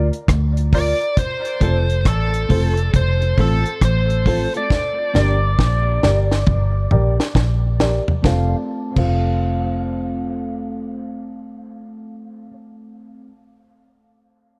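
A woody, slightly detuned upright piano plays stabs through a low-pass filter and dub echo, alongside a round, foam-muted electric bass and a dry, up-front reggae kit with a high-tuned snare and tight kick, opening on a brief break in this spacious, laid-back dub reggae excerpt. From 0.8 seconds a bright, overdriven lead guitar carries the melody through its own filter and echo, soon joined by soft-handed congas and a clean, picked electric guitar treated with analog chorus, filtering and echo, while a filter sweep runs from 1.2 seconds and a drum fill enters at 4.7 seconds. The drums and congas stop at 9.2 seconds, leaving piano, bass and both guitars in a dark, lightly reverberant mix.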